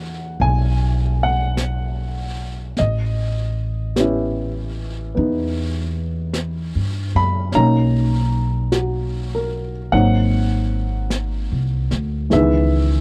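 A slow swung 4/4 sways under this tender, late-night jazz ballad, where an up-front baby grand piano with audible action noise and short sustain comps through lush extended chords over a woody, thumpy pizzicato upright bass, while a brush kit with a high-tuned snare and hi-hat enters at 0.4 seconds, all captured in a dry, close 1970s-style studio sound in what is cut from a longer piece.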